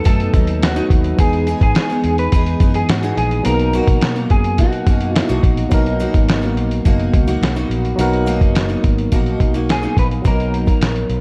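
A dark, hazy lo-fi mix with light digital reverb frames this laid-back indie and bedroom pop excerpt in B major at 106 BPM in a straight 4/4, moving through B7, Emaj7 and Bmaj7. Muffled, pitched-down sampler drums with a thumpy kick and 12-bit grit sit up front over a round, foam-muted electric bass. A full-bodied dreadnought acoustic guitar shimmers with lush chorus and vibrato, and a barky tine electric piano adds bright, lightly overdriven, cassette-worn accompaniment, while a slightly broken-up electric guitar from a small old amp carries the melody with analog chorus and tape echo, dropping out at 5.4 seconds and returning at 9.7.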